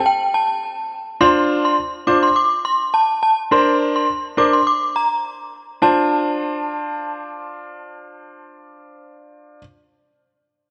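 A chiming, inharmonic FM synth chime carries the melody up front from the start, its ringing tone thickened by ensemble chorus and tape echo and drifting off in long, decaying tails until it stops at 7.5 seconds. A clear, intimate grand piano enters at 1.2 seconds with present, sustained accompaniment over Dm7 and Bbadd9, its action noise audible in a small room with light reverb. This hypnotic, tough dancehall fragment, cut from a longer piece, sits on worn cassette tape whose warbly pitch drift and dulled top end give it a vintage haze.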